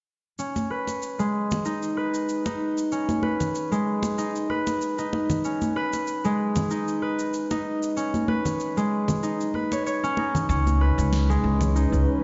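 An up-front concert harp, thumb-plucked and ringing, spins bright arpeggios through a filter sweep and digital delay, anchoring this earthy organic downtempo piece cut from a longer track, set in swung 4/4. Close, dry congas struck with hard hands and a layered electronic cabasa with a fat, tape-warm snare carry the groove, joined at 10.5 seconds by a woody, thumpy pizzicato upright bass on gut strings and a detuned, warbling sawtooth analog pad with chorus. A lush hall reverb surrounds the mix, which sounds as if played back over a big system in a bare stone room, with its top end capped at 7.6 kHz.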